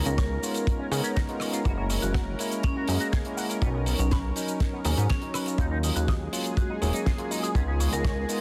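Sensual and groovy, this short nu-disco clip cut from a longer piece moves at 122 BPM in a straight 4/4, cycling through Db7, Gb7, Bmaj7 and Ebm7 chords. A tight, dry kick sits up front beside a glossy, nasal chorused synth bass that pumps with the sidechain, while a damped 70s kit supplies a fat snare, hi-hat, rim click and shaker in studio reverb. A bell-like tine electric piano with tape echo and a lush, detuned unison pad with slow attack and chorus carry the harmony; a twangy envelope-filtered guitar riff and a ringing vibraphone melody with fast motor vibrato sit in the background, all within a small room and a dense, heavily limited master.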